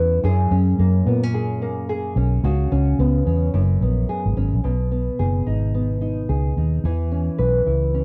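Indie bedroom pop with a nostalgic, sunny mood and a gentle swung sixteenth feel, this short excerpt moves from F#add9 through C#m7 and B6 to a closing E5. Up front, a classical nylon-string guitar is thumb-plucked with audible finger squeak, its tone coloured by subtle chorus and a warbly cassette pitch drift. Beneath it, a dark, round, punchy foam-muted vintage electric bass sits equally forward in a dry home-cassette recording with a soft, dulled top end.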